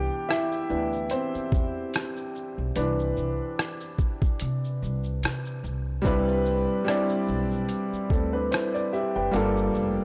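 A clear, vintage upright piano with long sustain opens this nostalgic, cosy lo-fi hip hop excerpt in C major at 73 BPM, taking a solo through its first 6 seconds and coloured by cassette tape and a low-pass filter, while a dark, pizzicato upright bass on gut strings plays beneath it. At 0.3 seconds a muffled, pitched-down sampler-style kit with a thumpy kick, hi-hat, rim click and shaker sits up front with a lightly swung 16th-note feel. A moderate spring reverb and a gritty hardware recording frame the Cmaj9 harmony, which moves to Gm7 at 9.3 seconds.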